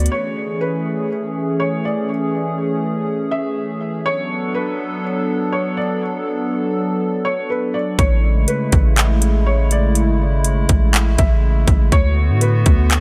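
A mellow, felt-muted upright piano sings an intimate melody with short sustain through digital delay over a hollow, flute-like pad pulsing with sidechain pumping and chorus, until at 8.0 s a trap kit with a hard-clipped kick, metallic hats and handclaps arrives up front beside a deep, dark sine 808 bass, giving this blissful, floating half-time cloud-rap excerpt its weight as the chords move between Amaj7 and D6.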